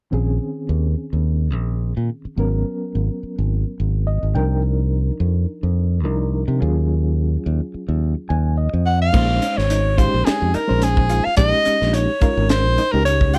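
Electric jazz fusion with a nocturnal, funky mood, moving at 107 BPM in 4/4 with a light swing on the sixteenths. This cut from a longer piece opens on a reedy, bright electric piano shimmering with fast tremolo, alongside a growly, up-front fingered electric bass, over minor eleventh chords that shift from Bbm11 through Abm11, Cm11 and Ebm11. The electric piano adds short fills along the way, the second leading into the change at 9.1 seconds. Just before that, at 8.9 seconds, a breathy, clear soprano saxophone takes the solo melody in a jazz style with scooped notes. At 9.1 seconds a crisp fusion drum kit joins with high-tuned snare, tight kick, hi-hat and crash in a small, pumping room, while a dark, clean electric guitar adds lush-chorused stabs in the background. The production is dry and dark overall, keeping the bass and saxophone up front.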